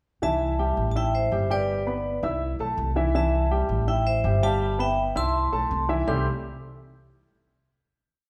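A brisk 4/4 salsa groove at 164 BPM in C major drives this short, festive, danceable piece, where a bright, ringing vibraphone with medium hard mallets plays motif-based call phrases, partly doubled in thirds, with slow motor vibrato, over a polished upright piano montuno in octaves and a dark, woody pizzicato upright bass playing a tumbao that anticipates the chords, all cycling through C6, Am7 and G before settling on a final chord at 6.1 seconds in a wet recital-hall reverb.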